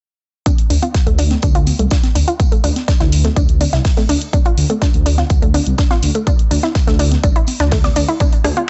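A straight 4/4 pulse at 124 BPM drives this bittersweet, expansive progressive house piece in D minor, built on a punchy, up-front electronic kick, layered electronic hi-hats, tape-warm electronic congas and rim click in the background, and a dry, airy damped 70s kit of hi-hat, fat snare and tambourine set further back, while a deep, rumbling detuned saw bass with sidechain pumping joins at 0.7 s beneath a round, nasal analog pluck playing arpeggios through chorus, tape echo, pumping and a filter sweep, in a close mix with little reverb moving through Dm, A5/D, F/D and Asus4.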